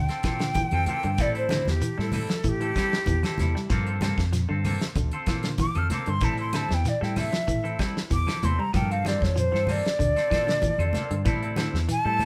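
Afrobeat with a driving, defiant mood, this live-in-one-room fragment sets an up-front, breathy, vibrato-laden jazz flute soloing over alternating Gm11 and Am7 chords, backed by a round, punchy, dark fingered bass, a clean background guitar picking arpeggios, a hollow-body electric guitar adding spring-reverbed stabs, a dry, polished drum kit with a fat snare and tight kick, and a background layer of grainy shekere, low-tuned congas and very quiet woody claves.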